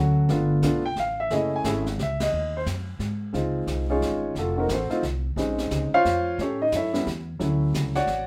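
A moderate studio reverb frames this playful, relaxed excerpt of a swinging jazz piano trio in 3/4, where a polished, present upright piano carries the melody up front over a woody pizzicato upright bass on steel strings, a small-room brush kit with dark cymbals and a high-tuned snare joins at 0.3 seconds, the band hits an accent at 2.2 seconds, and the piano takes a solo from 3.3 seconds through shifting extended chords.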